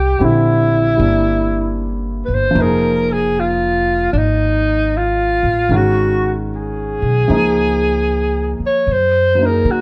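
A slow swing in 4/4 sets a late-night, tender mood in this short jazz ballad, cut from a longer piece. A breathy alto saxophone carries the melody as a mellow solo voice with vibrato and scooped notes, sitting up front yet sounding distant and roomy under a plate reverb. Pizzicato upright bass plays from the start, woody and thumpy with a dark steel-string tone, while a polished grand piano enters at 0.2 seconds to fill in the accompaniment. The harmony drifts from C7 and Fm7 through Abm7 and Db before settling on Gb69 near the end. A light reverb gives the whole ensemble a soft sense of space.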